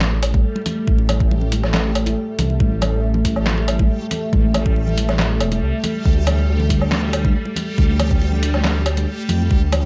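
This brooding, cavernous deep dubstep excerpt moves at 139 BPM in a half-time 4/4 feel. It opens with a dark analog pad holding sustained chords, a deep, rumbling detuned saw bass, and a muffled, pitched-down trip hop sampler-style kit of handclaps, hi-hat, snare and woodblock. An overdriven, knocking electronic kick sits up front, while thick-skinned acoustic congas carry a dub echo in the background. A reversed, granular texture with its own reverb adds a dreamy, bright shimmer above the low end. The harmony rests on a single chord before shifting to D5 at 6.1 seconds, and the whole passage is coated in vinyl crackle and a light digital ambience.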